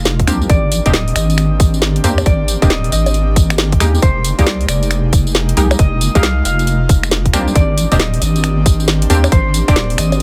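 UK garage in a bouncy, late-night two-step groove at 136 BPM with swung sixteenths, where a tight, up-front electronic kick and a garage kit of bongos, finger snaps, metallic hi-hats, a woody snare and tambourine sit alongside a deep, saturated wobble bass, while punchy, warbling chord stabs with chorus and digital delay and an airy, breathy pad sitting in the background move between Abmaj9#11 and Fm11 beneath a ringing concert harp melody touched with tape echo, all in a dry, close mix.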